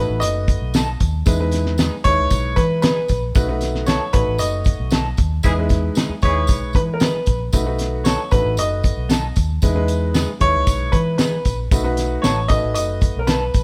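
Warm, uplifting 1960s-style soul at an uptempo 115 BPM in E major, cut from a longer piece, where a brilliant, up-front baby grand piano carries the melody over a woody, slightly detuned upright piano with audible action noise, a round, punchy foam-muted electric bass, a cloth-damped drum kit with a fat snare and tight kick, a jingly tambourine in the background and slightly broken-up electric guitar stabs with tremolo, while a dark, tight horn section adds a brief second line from 5.4 to 6.6 seconds during a band accent, the whole band playing live in one room with light reverb.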